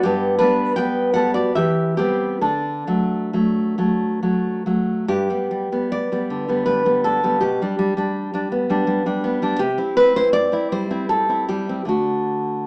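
A bright, full-bodied nylon-string guitar, fingerpicked up front on fresh strings, carries this sunny romantic classical piece alone in a rubato three-four lilt, moving into a new section at 5.1 s within this 12.7-second cut from a longer work, all set in a moderate large-studio reverb with a live, one-room, small-speaker sound.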